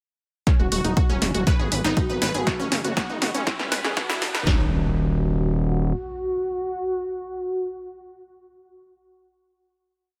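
Melodic techno with a hypnotic, driving mood, where punchy analog drum machines pound a four-on-the-floor kick with claps, snare and programmed hats up front, a gritty, saturated synth bass rolls in sixteenth notes under lush, detuned unison pluck arpeggios drifting against the bar through phaser and delay, and a round, brassy synth melody with chorus and dub echo carries a repeating riff through a build with a drum fill and filter sweep before resolving on a final chord at 4.5 seconds as a riser and impact sit in the background.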